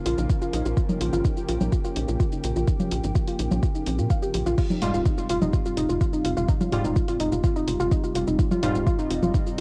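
A lush, thick unison pad opens the excerpt, holding detuned sawtooth chords under chorus and cassette-tape grain, and the warbly, dusty pluck, the tight sequencer bass and the punchy analog drum machine join at 0.1 s. This is dark, dramatic melodic techno at 126 BPM in 4/4 and F minor, moving from Bbm to Fmadd9. The pluck spins lo-fi arpeggios through chorus and tape echo, while the driving sawtooth-and-square bass sits up front with a fast-attack filter pluck and ring-modulated bite. An overdriven, deep electronic kick lands from 0.3 s, and the drum machine's congas, hi-hat, shaker and crash, re-recorded in a small room, pump against it. At 4.8 s a brassy, wave-folded synth stab enters in the background with chorus and tape echo, adding weight to the home-cassette sound and its moderate reverb.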